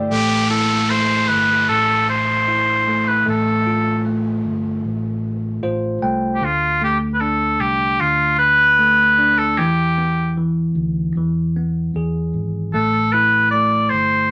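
A heartbroken, longing pop piece at 76 BPM in A minor, cut from a longer work, where a clear, smooth-topped oboe carries the melody in a classical style, up front in a moderate studio room. A bell-like, bright tine electric piano accompanies with a fill from 5.2 to 6.4 seconds, while a round, amped fingered bass holds the low end and an electronic downlifter sweeps beneath the opening until 6.4 seconds. The harmony moves from Am through Fadd9, D5 and E5 to E before settling on A5.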